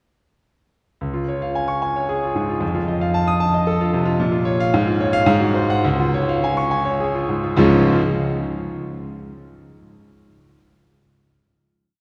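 A lush church reverb with a long 3.2-second decay surrounds this short, complete classical piece, a sparkling virtuoso piano study in D-flat major. A solo concert grand sits up front in the mix, its tone clear and smooth with a vintage character and a deep bass. Moving in a flexible rubato at roughly 103-115 BPM in 3/4, the piano enters at 1.0 s and fills the range from Db2 to Eb6 with sweeping arpeggios. The harmony travels from Db through F7 and Bbm, then Db/Ab and Ab7 before returning home to Db. A final chord arrives at 7.6 s, the piano stops at 8.0 s, and the hall's resonance carries the brilliant study to its close.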